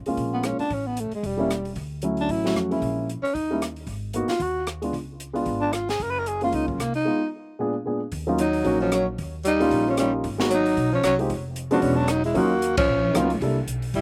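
Sophisticated and warm, this small-group swing and bop piece moves at a brisk 226 BPM in 4/4, with a growling, raspy tenor saxophone carrying the melody up front in a breathy subtone over a concert grand piano whose chords have deep bass and short sustain. A woody, thumpy pizzicato upright bass on gut strings and an acoustic drum kit with dark cymbals, a high-tuned snare and a boomy kick underpin the harmony, and at 8.4 seconds a close-miked second tenor saxophone joins with vibrato and scooped notes. Recorded outdoors with little reverb, the band hits a shared accent at 12.8 seconds before the cut.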